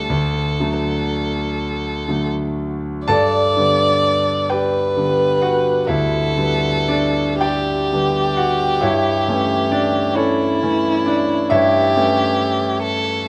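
Close, detailed microphones in a recital hall with a moderate reverb set a bright concert grand and a single warm, bowed violin up front in this lyrical, tender romantic duo, a fragment cut from a longer piece in a rubato 12/8 lilt. Across its 13.3 seconds the violin carries the melody with vibrato, portamento and a smooth, expressive top, while the brilliant piano accompanies with deep bass and open, long-sustaining chords moving from D to G and then A7/G.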